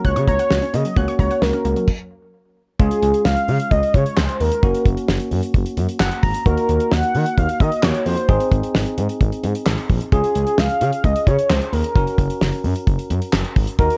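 Synth-pop with a wistful, nostalgic feel, this excerpt pairs a velvety, chorused synth lead carrying the melody with bell-like tine electric piano, a punchy detuned unison pluck whose delayed arpeggios stop at 1.9 seconds before a brief break, a smooth gliding synth bass and a damped, dry 70s drum kit with fat snare, tight kick, hi-hat, handclaps and crash, all set in light reverb and a worn, warbling cassette-tape sound with pitch drift.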